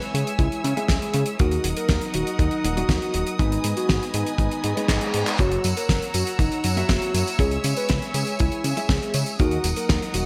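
Bright, 1980s-style digital production with light reverb and a small-room ambience frames this melodramatic, bittersweet slice of italo disco, cut from a longer piece. A soft, round, octave-layered synth lead carries the melody, its triangle-and-sine tone thickened by a sub octave, vibrato, chorus and delay. Behind it, a rich bowed string section holds smooth, even chords roughened by vintage 12-bit sampler grit, while a dark, clean electric guitar sits in the background with compressed stabs softened by lush chorus and a low-pass filter. A fat, detuned sawtooth analog bass with a fast, decaying attack anchors the harmony as it moves from C#m through D#m, G#m and F#7. The dry, tight kick and a damped 70s kit with a fat snare, hi-hat, handclaps and tambourine drive a straight 4/4 pulse, the kit bathed in studio and gated reverb. At 4.6 seconds, an electronic reverse cymbal rises in the background, leading into a drum fill that ends at 5.4 seconds.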